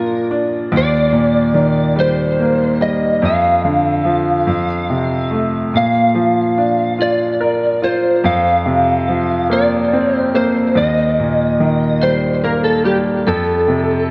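Tender and heartfelt, this six-eight pop ballad excerpt pairs a slightly broken-up electric slide guitar, carrying the melody up front with fingerpicks, compression, ensemble chorus and delay, against a bright, brilliant grand piano accompaniment, both playing throughout the 14.1 seconds in a dreamy mix soaked in plate reverb as the chords move from Bb through Eb6, Dm/F and Fsus4 to close on F.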